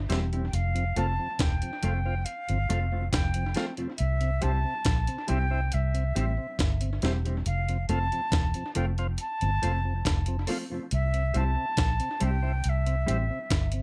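Roots reggae in a meditative, laid-back mood, this short cut from a longer piece rests on a dark, round, foam-muted electric bass and a gritty, compressed sampler-style drum kit with a thumpy kick and analog delay, both sitting up front. A clean, fingered electric guitar with its own delay and a smooth tonewheel organ turning through a slow rotary speaker fill in the accompaniment over chords moving between C and F. Above them, a distant, airy silver concert flute carries the melody with a crisp, chiffy attack and a slightly unsteady straight tone, trailed by analog delay, in a lightly reverberant space.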